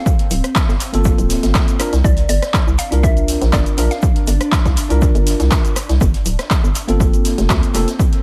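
A woody, warbling synth pluck plays the melody over a faint, ethereal pad from the very start of this moody, late-night deep house piece, the pluck falling away at 4.9 seconds. A punchy, overdriven electronic kick sits up front alongside a layered house kit of handclaps, hi-hat, rim click and shaker, with a distant, roomy big-band kit of hi-hat, shaker and snare in the background; a hollow, bouncy FM bass pumps beneath, and a clean tine electric piano adds stabs with dub echo from 0.9 seconds. The harmony moves from Gm11 to C9sus4 and back to Gm11 inside an echo-heavy digital ambience.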